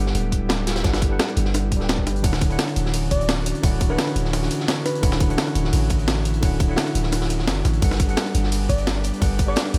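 A worn, slightly out-of-tune tine electric piano with light overdrive and delay opens this dreamy liquid drum and bass excerpt in D major at 172 BPM. It sits over a breathy, chorused pad in the background and a deep, mellow 808-style sine bass up front, as the harmony moves from Gmaj7 to Dmaj9 and back. Two drum kits enter almost at once: a gritty, pitched-up breakbeat sampler kit with hi-hat, ride and snare, and a vintage acoustic kit with high-pass filtered hats and snare set back in the mix, joined by a tight, layered electronic kick. A round, gentle FM lead with chorus and delay floats in at 3.1 seconds and returns at 8.7 seconds, within a digital ambience.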